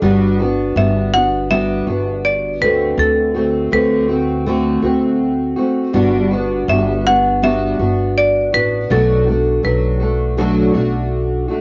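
Pop at 81 BPM in G major, heartfelt and carefree, this excerpt pairs a dark, up-front, double-tracked fingerpicked steel-string acoustic guitar, given a cassette-tape tint, with a woody, growly pizzicato upright bass, while a bright, percussive marimba struck with hard mallets carries the melody from 0.8 s over a Gmaj7, D7 and Bm7 progression, all set in light studio reverb on a home cassette recording whose top end stops at 7.5 kHz.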